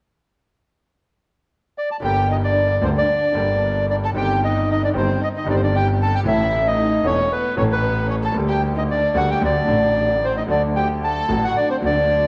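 Melancholic and passionate, this tango excerpt in G harmonic minor moves at a rubato 113 BPM, with a reedy, vintage bandoneon carrying the melody up front from 1.8 seconds, joined at 2.0 seconds by a smooth bowed violin section on a second line, a brilliant concert grand piano accompaniment with deep bass, and an intense, clear bowed double bass with light vibrato, heard in a wet recital hall.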